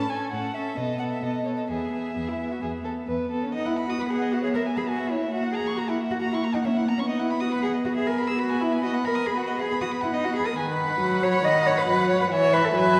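Heard from further back in a reverberant scoring stage, this short cut from a longer classical-period movement for string quartet has a cheerful, spirited character, moving quickly yet with a rubato flexibility. Two dark-toned violins share the upper register: the first carries the melody with a woody vibrato, sitting in the background, while the second spins a more expressive line, sliding between notes with portamento and ranging up high. The viola fills in the accompaniment up front, its soft attack and vibrato giving a warm, close quality with its own expressive slides. Beneath, the cello anchors the bass sul tasto, its airy bow and light vibrato lending an intimate, warm tone as it ranges from deep notes up into the treble. Around 3.5 seconds the harmony shifts to a new key area, and the passage arrives on an E chord at 12.3 seconds.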